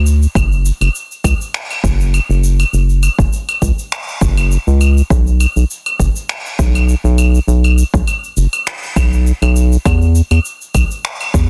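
A dry, dense and heavily limited mix carries this warm, sunny sunset chillout excerpt, where a round, dark analog bass blending square and sine tones with an evolving, wave-folded edge sits up front from the start, joined at 0.1 seconds by layered electronic shaker, claves and finger snaps with overdrive and a large-room character, and at 0.4 seconds by a deep, overdriven electronic kick placed up front, riding a lightly swung sixteenth-note feel.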